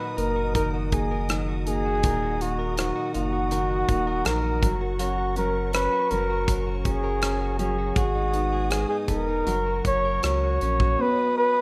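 A heartfelt, tender pop ballad at 81 BPM in 4/4, cut from a longer piece and built on D#m, F#, G#m and B. A punchy, up-front flugelhorn sings the melody with light vibrato and scooped notes over an open baby grand piano, a clean, compressed electric guitar picking arpeggios, and a lush, woody string section set distant in the background. A round, sine-like sub bass and a tight, mid-forward studio drum kit of kick, hi-hat and rim click enter at 0.2 seconds, all under moderate plate reverb in a rough home-demo mix.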